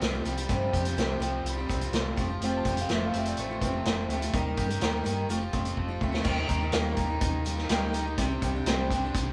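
Captured as a band playing live in one stone room with moderate reverb, this hopeful, nostalgic folk rock and heartland rock excerpt moves at 125 BPM in a straight 4/4, with a saturated, gritty vintage drum kit up front, dark cymbals and a tight kick. A picked steel-string acoustic guitar plays the accompaniment while a bright, double-tracked crunchy overdriven guitar carries the riff, and a round, punchy hollow-body short-scale bass holds the low end. A woody, boxy upright piano slips in behind them with a brief second line from 2.4 to 4.1 seconds, its action noise audible, and a drum fill at 5.8 seconds leads into a new section over chords such as Csus4, Fadd9 and Eb.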